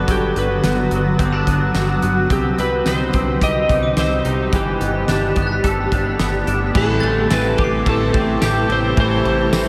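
A loose indie drum kit sets a straight 4/4 pulse from 0.1 seconds, its punchy kick, fat snare and dark cymbals sitting in a pumping studio room, while a fat analog bass with a thick, detuned sawtooth tone holds the low end. This dreamy, ethereal dream pop fragment, cut from a longer piece, moves through Gmaj7, Cm, G69 and Am7 under a huge, reverb-soaked mix. An electric slide guitar carries the melody with a dark, slightly broken-up voice, dressed in subtle chorus, tape echo and shimmer reverb. Beneath it, a cloudy, evolving granular pad holds bright sustained chords, and a clean, twangy, scooped electric guitar plays fingered arpeggios through ensemble chorus and tape echo. A glockenspiel struck with brass mallets rings in the background with a metallic, bell-like glint, and at 6.7 seconds a second clean, picked electric guitar joins in the background with tremolo and lush chorus as the harmony moves to Am7.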